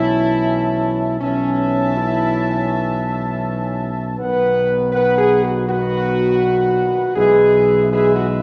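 Majestic and solemn, this short classical brass passage at 81 BPM sets a close-miked trumpet section's mellow melody with light vibrato over sustained chords from an up-front French horn section with a smooth top and a clear trombone section in the background, all anchored by a soft-attack tuba holding a low B, moving from A/B to B at 4.2 seconds and E/B at 7.2 seconds inside the wet reverb of a scoring stage.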